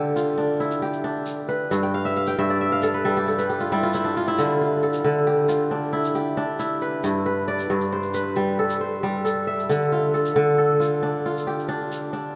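A vast, echoing space surrounds this short excerpt, its long cathedral reverb letting every note hang in the air. It is West African traditional string music in 12/8, moving at a straight 90 BPM in D dorian with a hypnotic, flowing mood. The kora sits up front, fingerpicking ringing, crisp arpeggios across a span from G2 to G5 as the harmony alternates between Dm and G. A kora fill runs from 1.8 to 4.4 seconds, and a new section arrives at 9.7 seconds as the chords settle back on Dm. Beneath it, a grainy, band-limited egg shaker with a bright, vintage edge keeps the percussion going quietly in the background.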